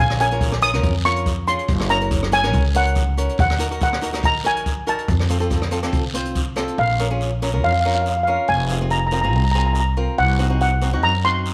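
Intense and dramatic, this calypso excerpt moves in a straight four-beat pulse through a brooding minor-key progression. A lead steel pan carries the melody up front, its metallic shimmer softened by rubber sticks into a mellow tone. Beneath it, a pizzicato upright bass with steel strings sits close and growly, while a fingerpicked flamenco guitar adds bright, boxy accompaniment. A brushed jazz kit with a boomy kick, hi-hat and rim click sounds distant and roomy. It drops out at 6.8 seconds, leaving the raspy guiro as the only percussion through a second pass of the same section, and light reverb gives the ensemble a touch of space.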